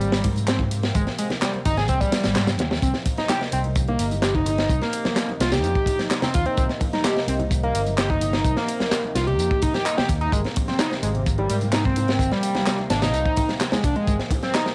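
Energetic and gritty, this breakbeat excerpt is driven by a crunchy, saturated breakbeat kit with a high-tuned snare and tight kick sitting up front, backed by a tape-warm house kit of handclaps, hi-hat and ride in the background, and very quiet bongos and congas played with soft hands. A screaming, guitar-like overdriven synth lead carries a wave-folded riff with vibrato and analog delay over a dark, round fingered electric bass, while a swirling, detuned analog pad breathes behind them with phaser, chorus and sidechain pumping. The harmony moves from Abadd9 to Cm7 at 2.8 seconds after a band accent at 2.4 seconds, with the whole piece carrying the character of a home cassette recording in light reverb.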